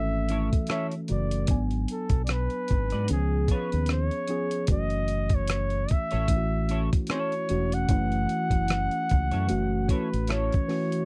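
Sultry and introspective, this slow 75 BPM neo-soul R&B cut in F# minor swings lazily as a smooth flugelhorn with light vibrato sings the melody over a clean tine electric piano with phaser, a round, punchy fingered dub bass, a semi-hollow guitar second line through analog chorus entering at 0.3 seconds, and a gritty, thumpy sampler-style kit of kick, hi-hat and rim click, all captured dry and close like a 1970s studio session.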